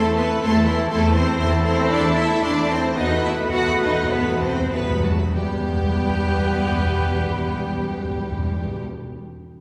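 Restless and urgent, this short orchestral passage from a longer classical piece sits in E minor in 4/4, with the tempo ranging from 92 to 123 BPM and slowing through its opening 5.4 seconds. A lush violin section carries the high melody in the background, while a second, more distant violin section, a mellow cor anglais, an airy large flute ensemble and a very quiet clarinet weave supporting lines around it. A smooth viola section and a present bassoon fill in the accompaniment, a tight French horn section holds sustained chords, and a trumpet with light vibrato adds stabs. Underneath, a focused cello section shares the bass with the double bass section, which stays on a low E. Soft-malleted timpani with a round, dry tone enter at 3.0 seconds with a fill that carries the Am/E and B7/E harmony into the arrival on E minor at 5.4 seconds. The strings and winds are heard from further back in a wet scoring-stage reverb.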